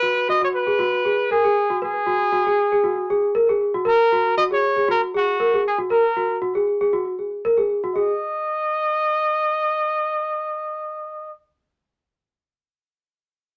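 Afrobeat at 117 BPM with a lightly swung sixteenth-note feel, this funky, defiant fragment of a longer piece is tuned a touch flat and moves from G#m7 to F# before the harmony falls away at 7.9 s. A vintage-toned solo trumpet carries the pop-style melody up front with vibrato until 11.3 s. Beside it, a bell-like, slightly out-of-tune celesta with hard felt hammers plays sweet, band-limited arpeggios through a slapback echo, stopping at 8.1 s, all captured in a rough rehearsal-room recording with moderate studio ambience.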